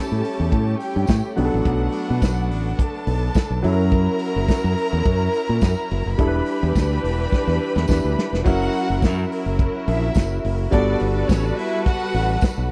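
A natural concert grand piano with deep lows and an up-front, bright fingered electric bass open this glamorous, sultry disco excerpt, quickly joined by a tight soul drum kit with dark cymbals and a roomy, distant edge, with a drum fill from 7.3 to 8.5 s leading into a new section. Above them, a smooth violin section with vibrato carries a second line while a lush, biting string section holds sustained chords, and a jingly tambourine sits in the background from 1.1 s. The harmony moves through A7, Bm7, F#7 and Em7, then F#7 again and Gmaj9, in a dry mix.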